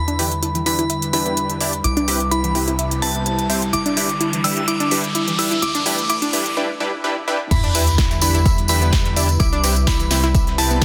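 A glassy FM bell melody and a tight, saturated sequencer bass open this emotional, bittersweet progressive house passage in E minor at 127 BPM, joined at once by a warm detuned analog pad, lush unison plucked arpeggios, punchy supersaw stabs and a big-room dance kit with crisp hats and a punchy snare, as filter sweeps, a riser and a swell build over Em7, Cmaj7, G6 and Dsus2 toward a brief break, until the drop at 7.5 seconds brings in a deep, overdriven electronic kick, a gritty, pitched-up breakbeat kit tucked far back and a jingly tambourine, all under sidechain pumping on the pad, pluck, stabs, bass, hats and cymbals, dub echo on the bell, pluck and stabs, light digital reverb and a dense, heavily limited master.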